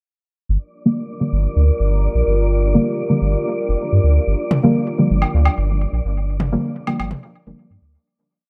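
Bright, 1980s-style digital production with light reverb and a digital ambience frames this nocturnal and hazy dub techno piece in G minor, moving at 127 BPM in a straight 4/4 groove on a single Gm7 chord. A round, sine-like sub bass enters first at 0.5 seconds, sitting up front with a syncopated riff. Deep, mellow chord stabs with a nasal, soft edge follow, sparse and echoing through chorus, phaser and dub echo, one shape moved in parallel while a filter sweep runs across them. Above them a moody analog pad holds sustained chords with a slow attack and a sub octave, colored by chorus and phaser, while an airy, breathy wind-like noise texture holds a high note in its own built-in reverb. From 4.5 seconds, tape-warm electronic toms and a low woodblock, re-recorded in a small room, add echoing percussion before the piece fades out from 5.5 seconds.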